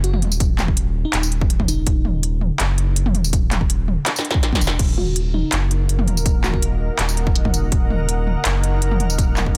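Dark and spacious, this half-time drum and bass excerpt in Eb minor at 164 BPM pairs a thick, saturated sub bass and a tape-warm industrial kit with clanging snare and crisp hats, a heavy electronic kick, and a bell-like FM electric piano with chorus and dub echo sitting in the background, before a moody detuned analog pad with sidechain pumping enters at 5.5 seconds and a reversed, dreamy granular texture swells in at 5.9 seconds, all in a dense, heavily limited mix following a drum fill at 4.1 seconds.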